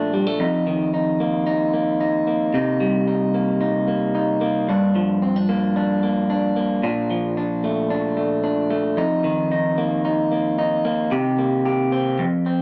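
A lone electric guitar, played through a small old amp, opens this indie pop excerpt on a suspended F7sus4 chord. The mood is restless yet bittersweet. The picked tone is slightly broken-up and compressed, sitting up front in a moderate club reverb as it moves through Cm7, Gm7 and Bbmaj7. It circles back to F7sus4 before settling on a bare C5 at 11.1 seconds, all in a straight 4/4.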